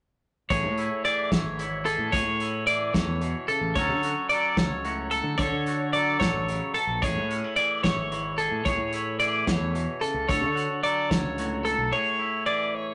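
A bright, compressed twelve-string electric guitar spins clean, picked arpeggios up front over a scooped, twangy electric guitar accompaniment, a growling, overdriven fingered bass and a loose indie drum kit of hi-hat, punchy kick and snare in this intricate, playful math rock and midwest emo excerpt at 74 BPM in 6/8, moving between Amaj7 and Dmaj7 in A major with moderate reverb and the warm, rough saturation of a rehearsal-room recording.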